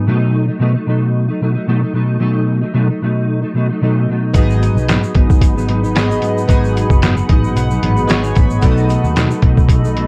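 A dark, clean, fingered electric guitar with ensemble chorus and vibrato opens this laid-back, hazy indie and bedroom-pop piece at 112 BPM with a light swing, moving from B7 to G#m7 before a compressed, muffled lo-fi sampler-style drum kit with a thumpy kick, a round foam-muted picked bass, a faint grainy egg shaker and glossy, bright retro synth keys arrive at 4.3 seconds, followed by a cloudy, evolving granular pad with its own reverb at 5.0 seconds and a synth-keys fill at 7.0 seconds, all set in light reverb with a cassette-tape character.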